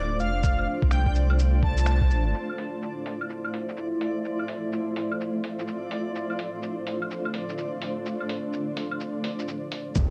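A cloudy, blurred granular pad sits up front through this wistful, ghostly future garage fragment, its detuned sustained chords pumping against the sidechain while moving from Dm7 to Fmaj7 and back in D minor at 126 BPM with a 63% swing on the sixteenths. At the start, an airy, bright lead with chorus, vibrato and tape echo floats a soft melody high above, while a round, deep sine sub bass and a muffled, thumpy sampler-style kick give the opening its weight. The kick drops out at 2.1 s and the lead and bass follow at 2.3 s, leaving the pad, a reversed, swelling triangle texture glowing faintly in the background, and a pitched-down, lo-fi kit of claves, finger snaps, hi-hat and shaker, its percussion dulled by low-pass filtering. At 10.0 s the bass and kick return alongside an electronic impact. The production is dark and warm with light digital ambience, and the passage is cut from a longer piece.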